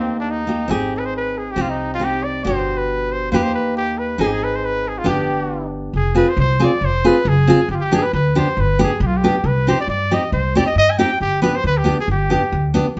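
Klezmer in a straight 2/4, festive yet bittersweet, heard as a short cut from a longer piece. A punchy cornet carries the melody up front, its forceful, jazz-inflected solo full of scooped notes. A nylon-string guitar, bright and full-bodied, fingerpicks the accompaniment in a deep classical manner, sitting just as far forward. Beneath them a pizzicato upright bass with steel strings gives a woody, thumpy low end. The trio plays live in one room with a wet studio reverb and a softened top, and the harmony settles onto a slower-moving progression when the second section arrives at 5.9 seconds.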